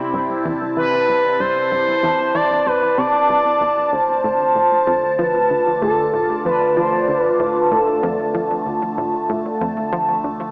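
Heard through a small-speaker sound drenched in a long plate reverb, this mysterious, hypnotic fragment of sequencer-driven space music moves at 95 BPM in D dorian, shifting from Cadd9 to Dm at 3.9 seconds. A swirling, nasal, detuned analog pad holds up-front sustained chords with phaser and chorus, while a round, bright analog pluck with a sub-octave plays a low riff through chorus and tape echo, and a filter sweep on the synth arpeggio sound runs the whole 10.5 seconds. From 0.8 seconds, an expressive, smooth synth lead sings a short melody with vibrato, chorus and tape echo.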